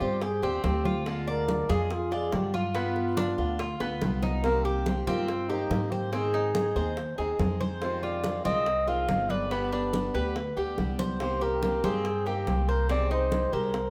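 A bucket-muted trumpet leads this danceable, nostalgic Cuban son and guajira excerpt with a veiled, breathy, whispered jazz solo full of scooped notes, set over an up-front pizzicato upright bass with a thumpy, woody tone. Underneath, a mellow Cuban tres picks metallic arpeggios on double strings while a boxy, swing-style acoustic guitar supplies picked accompaniment. Congas and high-tuned, compressed bongos sit in the background, with drum fills at 3.8 and 10.8 seconds, all within a moderate large-studio reverb as the chords move from a suspended dominant into a minor-key progression.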